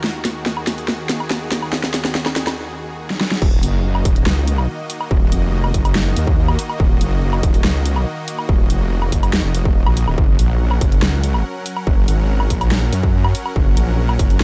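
A heavy, saturated wobble bass with chorus and overdrive slams in up front at the 3.4-second drop alongside a distorted electronic kick, driving this chaotic, menacing half-time wobble dubstep fragment at 142 BPM in Eb minor, after a build-up in which the dubstep drum kit's huge snare, bright hats, crash and woodblock fill out over a lush, detuned supersaw pad that pumps under sidechain and shifts from Ebm to Gb at 10.2 seconds, in a dry mix with little reverb.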